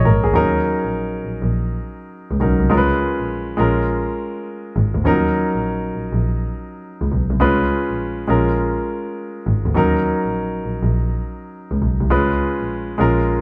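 A bowed double bass, played by a single player, stands out at the front with a rich, smooth tone and vibrato, holding an even line low in its range, though it carries a slightly distant quality. This is a confident, punchy slice of R&B in the new jack swing style, taken from a longer piece and moving at 102 BPM in 4/4 with a swung sixteenth-note feel in Eb minor. A baby grand piano shares the spotlight as accompaniment, its polished, present voicings sitting in the middle register. Both instruments play together from the start through 13.4 seconds, framed by a light reverb. The harmony cycles through Ebm7, Db7 and Bbm7, returning to Ebm7 at 5.0 and again at 9.8 seconds before landing on Db7.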